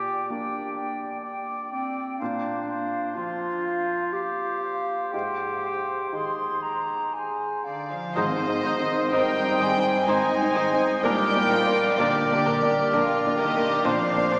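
Drenched in cathedral reverb yet heard through a small speaker, this uplifting, moving cinematic film-score excerpt in 3/4 drifts rubato at 59-65 BPM in Ab lydian, opening with a mellow clarinet, silver concert flute and distant oboe playing second lines over a felt-muted upright piano with audible action noise, before at 7.7 s a floating sul tasto violin section takes the melody above a dark cello section, joined by a clear background violin line, sustained French horn chords, a double bass section, an intimate viola section and a brief, very quiet hard-mallet timpani entry at 8.2 s.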